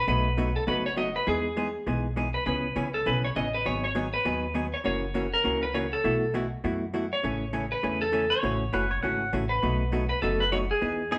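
A clean, fingerpicked lap steel carries the sliding melody up front in this playful, swinging western swing excerpt at 201 BPM, over a woody, thumpy pizzicato upright bass on gut strings. A dark, compressed hollow-body jazz guitar, also up front, plays the accompaniment through chords such as B7, Emaj7 and C#m7, with the band sounding live in one room under wet studio reverb. At 8.7 s a warm pedal steel slides in with volume swells as a second line.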